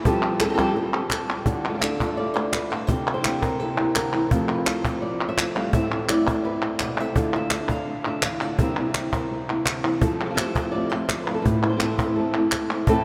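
A dark, fingerpicked flamenco guitar carries the melody from the very start of this fiery, intense flamenco excerpt, joined almost at once by a woody cajon played with soft hands and crisp palmas hand claps up front. At 1.5 seconds a second flamenco guitar enters with boxy, thumb-plucked stabs and audible finger squeak, while the harmony cycles through Dm, C7, F and Am. A vast, echoing cathedral reverb gives the performance a long, resonant wash.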